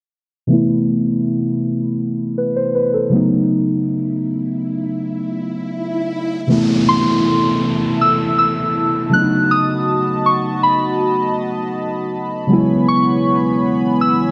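Tender and romantic, this slow R&B excerpt at 80 BPM opens at 0.5 seconds on muted, felt-like synth keys, intimate and dark under a low-pass filter sweep, moving through Amadd9 and B7 while an electronic swell and downlifter sound in the background. At 6.5 seconds a shimmering, detuned pulse-width pad enters with sustained chords, and moments later, at 6.9 seconds, a soft, pure FM bell sings a gentle, warbling melody up front through chorus and tape echo before the harmony settles on E6. The dark production sits in light reverb and digital ambience.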